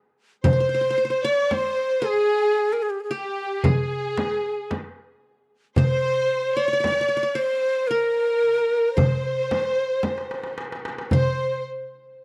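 Warm and festive, this excerpt of Arabic maqam ensemble music moves at 112 BPM in a straight 10/8, set in maqam saba on C, with a breathy, up-front ney carrying the melody from 0.5 seconds, its reedy tone shaded with vibrato and tongued attacks. A bright, plectrum-plucked qanun and a clear, focused chamber violin section sit further back on second lines. A crisp metal-shell darbuka and a close, dry frame drum struck with hard hands drive the rhythm, with a drum fill from 10.0 to 11.1 seconds leading into a brief new section, all captured in a dry, close 1970s-style studio sound.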